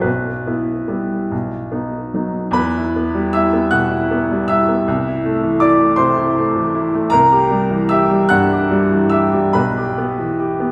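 A rubato six-eight sway carries this short cut from a romantic character piece for solo upright piano, whose clear, woody tone moves through bittersweet, stormy harmonies from a minor-chord opening to a new passage at 2.6 seconds, all bathed in a reverberant recital hall heard from further back in the room.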